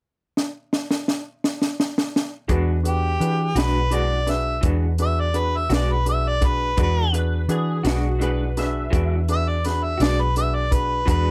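A compact cocktail drum kit with a high-tuned snare and punchy kick opens this soulful, swaggering slow blues in 12/8 at 56 BPM with a fill, then at 2.5 seconds the band drops onto an E9 chord as a dark, foam-muted fingered bass, a woody upright piano with audible action noise and a lo-fi guitar with tremolo through a small old amp settle in beneath a clear, overdriven harmonica carrying the melody with vibrato, while a second, slightly broken-up guitar with chorus and analog delay adds a brief line from 7.1 to 9.1 seconds, all in a dry, close room.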